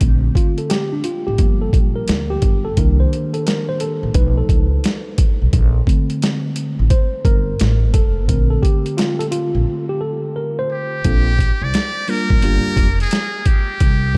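A swung 16th-note groove at 87 BPM in 4/4 drives this relaxed, smooth jazz-hop piece in Bb major, tuned slightly low. The boom bap sampler-style drum kit sits up front with a thumpy kick, a medium-tuned snare and hi-hat, its sound compressed, gritty and overdriven as if re-recorded in a small room. Beneath it, a pizzicato upright bass on steel strings gives a woody, warm, up-front low end, while a worn, slightly out-of-tune tine electric piano carries the chords and takes a solo, its clean, direct tone staying mellow under the beat. The harmony moves through Bbmaj9, Gm7, Cm7 and B7#11 before returning to Bbmaj9. After a break at 9.7 seconds, a trumpet with a metal mute enters at 10.7 seconds with a brilliant, buzzy, breathy melody, thin and softly attacked, with light vibrato and a tape echo. Light reverb gives this cut from a longer track a gentle sense of space.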